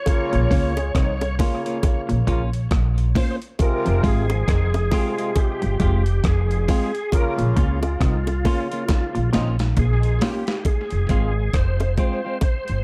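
Roots reggae in F minor, meditative and hypnotic, moving at a slow 68 BPM in 4/4 with a swung sixteenth-note feel. A reedy tonewheel organ carries the melody through chorus vibrato, a slow rotary speaker and tape echo, its key click audible. A punchy, close-miked trombone section with light vibrato plays a second line, also through tape echo. Up front, a gritty, compressed sampler-style kit with a thumpy kick, rim clicks, snare and hi-hat sits in a large room, alongside a woody, growly pizzicato upright bass, while tight, high-tuned bongos and a dark hollow-body guitar riff with a vibrato effect stay in the background. A clean, picked electric guitar adds accompaniment through phaser and tape echo as the harmony moves between Bbm and Fm. A drum fill begins at 8.9 seconds, the trombones drop out at 9.5 seconds, and the semi-hollow guitar stops at 10.0 seconds, all within a dark, lightly reverberant production that is cut from a longer piece.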